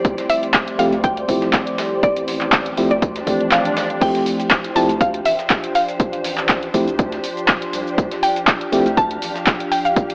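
A moody, late-night deep house excerpt opens at once with a woody, bright mallet-like synth pluck melody, silky string machine chords and warbling FM electric piano stabs over a round, deep analog bass, a punchy up-front electronic kick, a tape-warm analog drum machine with handclaps, crash, hi-hat and shaker, and a gritty, pitched-up breakbeat sampler kit kept very quiet, while an electronic swell rises at 3.2 seconds into the drop at 4.0 seconds, the electric piano falls away at 8.9 seconds, and lush hall reverb, vinyl crackle and an AM radio tone color the whole mix.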